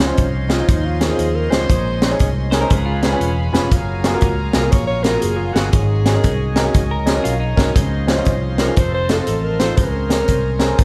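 A soft-attacked, subtoned alto saxophone carries the melody from 0.5 s in this jubilant, hopeful uptempo gospel piece in Db major, swinging at 119 BPM over a polished grand piano, a punchy fingered electric bass and a tight funk drum kit with a high-tuned snare, both bass and drums sitting up front. A gritty, overdriven tonewheel organ with key click and slow rotary speaker holds chords in the background beneath a floating, very quiet string section, while a clean, compressed electric guitar with spring reverb adds a brief second line at 2.5 s and 6.9 s. The moderate reverb of a church or concert hall surrounds the band as the harmony moves from Dbmaj9 through Gbmaj9, Ab7sus4 and F7 to Bbm9/Db.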